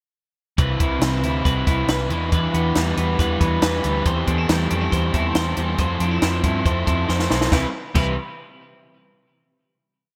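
Jangly indie pop with a nostalgic, youthful glow, where a bright, twangy twelve-string electric guitar rolls fingerpicked arpeggios over a warm, overdriven garage guitar strumming eighth-note barre chords, a round, foam-muted vintage bass driving eighth notes, and an up-front compact cocktail kit with a high-tuned snare, punchy kick and dark cymbals setting a brisk backbeat, all in a bright 1980s-style digital production with plate reverb, before a drum fill at 7.1 seconds leads into a final Cmaj7 chord.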